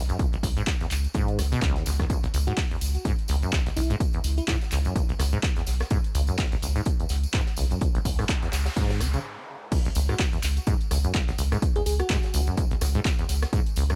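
A squelchy, resonant sawtooth acid riff with lush chorus and tape echo rides over a thick, tube-saturated sub bass with sidechain pumping, an up-front electronic kick, tape-warm drum-machine claps, hats and rim clicks, a dry high-tuned funk kit, and a jingly tambourine in this trippy, hypnotic 126 BPM acid house excerpt in C# minor with 16th-note swing, as a sparkling, bell-like FM electric piano with phaser glints in briefly, a noise sweep runs from 8.1 s into a short stop, and the groove drops back in at 9.7 s.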